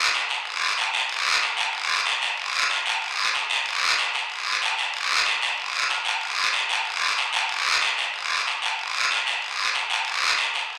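The sound is that of a large studio with a moderate reverb tail of about 1.0 s, and it feels like a band playing live in one room. This short latin cut from a longer piece moves at a quick 188 BPM in a straight 4/4, with a driving, passionate mood. The guiro carries the recording from 0.1 s to the end, its raspy, acoustic scrape sitting up front while the room adds a distant, spacious air around it. At 8.1 s the music moves into a new section, and the guiro keeps propelling it through to the close at 10.8 s.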